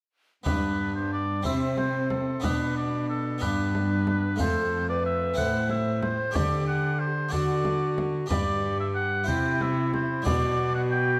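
In a straight 6/8, this festive yet stately Renaissance-style consort dance places a clear, lightly vibrato oboe melody up front over an airy, chiffy tenor recorder second line, a dark, gut-string bowed cello bass, a full, brilliant plucked harpsichord and a close, dry frame drum, the consort set in a moderate recital-hall reverb in this brief cut from a longer piece.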